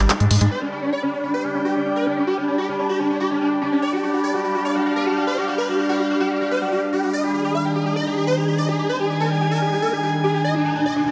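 A driving, intense psychedelic trance excerpt at 145 BPM in a straight 4/4, where a drum and bass kit of layered electronic handclaps and hi-hat sits up front in a small room, joined by a deep, round analog bass with tube saturation and a squelchy, resonant acid riff with tape echo, all three heard only for the first 0.5 seconds. A swarming, aggressive rave lead built from detuned unison sawtooth and pulse waves carries the bright melody through chorus, phaser and digital delay, over a drone of evolving, moving overtones with 12-bit sampler grit. From 1.1 seconds an airy, breathy pad with a noise layer fills the texture, and a background riser enters at 10.6 seconds, all under moderate plate reverb and a dense, heavily limited master.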